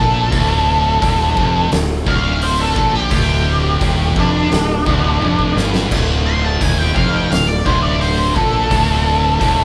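A dark, octave-fuzz lead guitar leads this hypnotic, brooding stoner and doom metal passage, singing up front with wah and distortion over a low riff in D minor at 86 BPM in a straight 4/4. Beneath it, a bright, double-tracked high-gain guitar and two thick fuzz guitars, one murky and one very quiet, grind through the riff in the background, while a growly, overdriven fingered bass anchors the low end. A vintage string machine voiced as violas holds sustained, slow-attack sawtooth chords with an ensemble chorus, sitting very quietly behind the guitars. At 0.3 seconds an oversized, low-tuned drum kit comes in with a boomy kick, fat snare, dark cymbals, toms and hi-hat, its big, pumping room sound saturated and gritty, and it plays a fill between 5.2 and 5.9 seconds. The whole band sounds as if playing live in one room with light reverb, the guitar solo running throughout this short cut from a longer piece, which rests entirely on a D minor chord.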